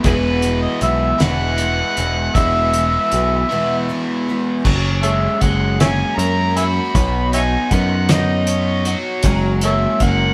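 A slow, straight-felt 6/8 sway carries this jangly, open-road slice of folk rock and heartland rock, cut from a longer piece and played live by a band in one room. A cloth-damped, thuddy drum kit sits mid-forward with dark cymbals, a fat snare and a tight kick, while a punchy picked electric bass stands up front beneath it. A shimmering, octave-doubled twelve-string acoustic guitar rings in the background with audible finger squeak, and a bright, double-tracked overdriven electric guitar plays the riff. Out front, an amplified, gritty harmonica takes the solo melody with vibrato, scooped notes and tongue slaps. After a break at 3.5 seconds, the harmony moves at 4.7 seconds from E major into a second section built on F#add9 and Badd9 chords, all bathed in moderate studio reverb.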